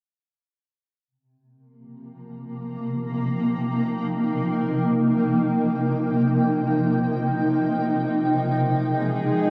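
A granular cloud pad sits up front from 2.3 seconds, its blurred, detuned triangle tones forming evolving sustained chords over Eb in this luminous, weightless ambient excerpt in free time. At 9.0 seconds a tense, string-like sawtooth drone with vibrato and a noise layer arrives quietly beneath it. A huge, long-tailed reverb washes over the whole piece, and the sound has the worn, warbling pitch drift and dulled top of an old cassette tape.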